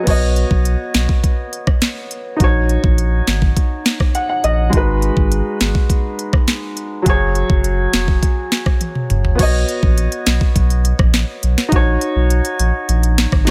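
Bouncy and tough, this dancehall cut from a longer piece moves at 103 BPM in a straight 4/4, tuned to A4 = 435 Hz, with a dry, close sound. An electronic, overdriven drum kit sits up front with a knocking kick, sharp snare, crisp hats, rim clicks, toms and crash, while a deep, thick, saturated sub bass holds long, fast-attack notes underneath. A baby grand piano with open, long-sustaining tone carries chords from Badd9 through Ebm7, Abm7 and Gbsus2, adding a fill at 3.9 seconds before a drum fill at 8.8 seconds leads into a new section at 9.4 seconds.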